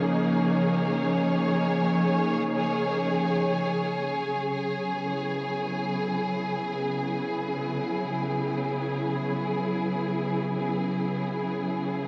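Ambient piece in free time and C# dorian, serene and spacious, where a dark, lush symphonic string section up front holds expressive, vibrato-rich sustained chords with a smooth top and shimmer reverb from 0.0 to 12.1 seconds, while a tense, bright, detuned sawtooth drone with a noise layer sits in the background until 4.1 seconds, the harmony moving from A#m7 to C#m at 4.0 seconds, all heard through a wet concert hall and a worn, warbling old cassette with drifting pitch, cut from a longer piece.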